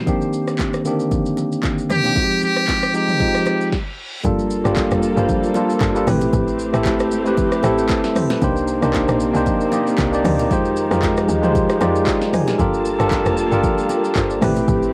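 A hypnotic, late-night amapiano cut taken from a longer piece, opening on a bright, bell-like tine electric piano over a deep house drum kit with a deep kick, punchy snare and overdriven, gritty sampler texture, while very quiet congas and bongos add hard-handed acoustic colour. A muted trumpet with a buzzy, thin tone and tape echo sounds a brief phrase from 1.9 s, then a reverse cymbal rises into a short stop before the drop at 4.2 s. From there, a woody, percussive log drum bass and a bowed string section, warm with vibrato and sidechain pumping, carry the cassette-coloured groove through a cycle of minor ninth chords.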